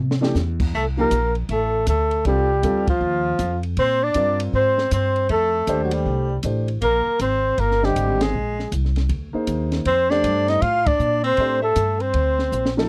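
A dry, close 1970s-style studio sound frames this relaxed small-group swing and bop passage at 158 BPM in F mixolydian, with a swinging 4/4 feel. Woody pizzicato upright bass sits up front beside a compact cocktail kit with a dark, smooth tone, a high-tuned snare and a punchy kick. A grand piano accompanies intimately with its action noise audible, while the flugelhorn carries the melody with scooped notes alongside a tenor saxophone's light vibrato on the second line, and the band hits accents at 2.8, 8.2 and 10.8 seconds between drum fills at the start and finish.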